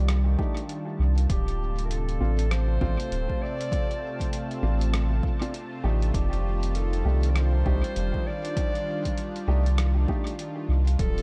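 An echo-heavy, dry-roomed ambient dub excerpt at 99 BPM in F mixolydian, peaceful and spacious, where a deep, round triangle-and-square sub bass and a punchy, up-front electronic kick anchor muffled, pitched-down sampler hi-hat and rim clicks, a smooth detuned sawtooth pad with chorus sustains F13 and Dm7 chords, woody upright piano stabs enter at 0.4 seconds, and a clear, classical-style solo clarinet carries the melody from 1.3 seconds, both trailing dub echo.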